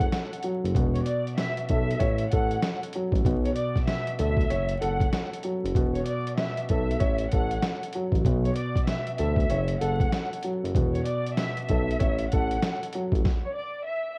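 This boom-bap hip-hop excerpt has a gritty, moody air and a swung 16th-note feel. A compressed, sampler-style drum kit sits up front with a thumpy kick, a medium-tuned snare and hi-hat, and it carries the grit of a cassette tape and a large-room re-recording. Beneath it, a smooth synth bass blends sawtooth, square and triangle tones into a nasal, sustained sound with a touch of vibrato. A dark, woody upright piano plays the accompaniment; it sounds worn and slightly detuned, with its action noise audible, and it is filtered and tape-coloured. Over the F#m, Esus4, A6 and Bm7 cycle, a lush studio violin section carries the melody with vibrato and portamento, its bowed lines softened by filtering and analog delay. The drums, bass and piano drop out around 13.2 seconds, leaving the violins to ring until 14.2 seconds, all over a dry, home-cassette sound flecked with vinyl crackle.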